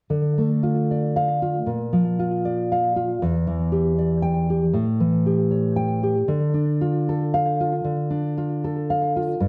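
Closely miked and detailed, with light reverb, this short cut from a longer romantic piece for solo classical guitar sets a melancholic, intimate mood in a free rubato feel. The nylon-string guitar plays alone and up front from 0.1 to 9.5 seconds, its dark, full-bodied, thumb-plucked tone carrying slapback echo. It moves through Dm, Bb, Em7 and A7 before settling back on Dm.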